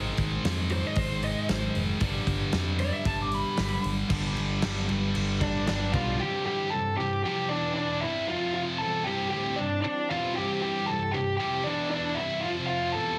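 This excerpt of quiet-loud alternative rock opens at 115 BPM in 4/4 with a straight feel in C major. A bright, scooped high-gain guitar riff sits up front beside a tighter distorted guitar riff, a dark, round picked electric bass and a big acoustic rock kit with a fat snare, punchy kick and rolled-off top. A lead guitar through a small cranked amp soon takes the melody, its overdriven, lo-fi tone up front as it solos over the band. At 4.1 seconds a soft-attack, vintage organ-string pad with phaser and ensemble chorus slips in behind with sustained chords, joined briefly by a double-tracked, compressed overdriven guitar riff in the background. By 6.2 seconds the drums, bass and the tight and overdriven guitars have stopped, leaving the scooped riff, the lead and the pad to carry a restless, anthemic stretch over chords moving between C, E5 and F5. The mix has light reverb and a heavily compressed, radio-like sound.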